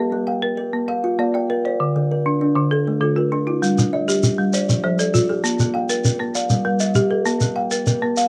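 Hypnotic and warm, this short passage of southern African traditional music, cut from a longer piece, circles through an mbira-style interlocking cycle at 132 BPM in dotted quarters, in a straight 12/8. A folk marimba struck with hard mallets lays down dry, woody arpeggios on hardwood bars, its dark, rustic tone sitting up front and spanning from D3 to F5+29c. Beside it, a kalimba adds plucked arpeggios from D3 to G5, its thumb-struck notes ringing with a hollow, boxy character and a slapback echo. At 3.6 seconds a shekere joins with a grainy, mellow, band-limited rattle that carries a vintage feel. The harmony moves through Bb, Dm, G5, F, Bb5 and Gm. Recorded outdoors with little reverb, the sound stays close and intimate.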